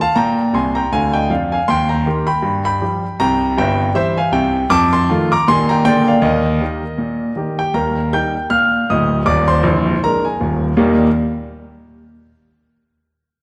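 Swinging at 158 BPM in 4/4, this playful, exuberant stride-piano jazz fragment in Eb major, cut from a longer piece, features a clear, intimate solo grand piano placed up front with audible action noise, ranging from Bb0 to G6 and slipping in a fill at 0.5 seconds before moving through chords such as Abmaj9, G7, C7 and Bb7 until it stops at 11.1 seconds, all ringing in a wet recital-hall reverb with a 1.7-second decay.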